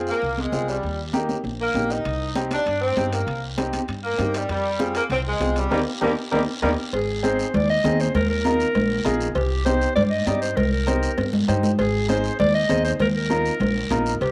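A home cassette recording bathed in wet spring reverb carries a fiery, danceable cumbia at 198 BPM, where a distant, roomy saxophone section states the melody over clear woody upright piano, thumpy gut-string upright bass, raspy guiro and ringing high-tuned congas, with metal-shell timbales and cowbell joining at 2.1 seconds in the background, until a band accent and drum and piano fills hand off at 6.9 seconds to a clarinet solo with light vibrato and scooped notes over Ab, Ebsus2 and Cm chords.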